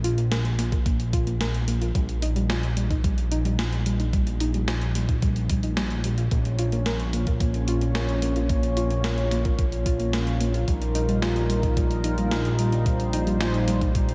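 A soft, round pluck plays dark, chorused arpeggios with delay over a fat, nasal analog bass with tube saturation and sidechain pumping, while a tape-warm 80s drum machine ticks out hi-hat and a gated-reverb snare in this moody, driving synthwave excerpt at 110 BPM in 4/4. A thumpy electronic kick joins at 0.7 seconds, and at 6.3 seconds a shimmering, mellow pulse-width pad enters with pumping sustained chords as the harmony moves from Ebadd9/Bb to Bb minor. The dreamy mix is soaked in a moderate cathedral reverb.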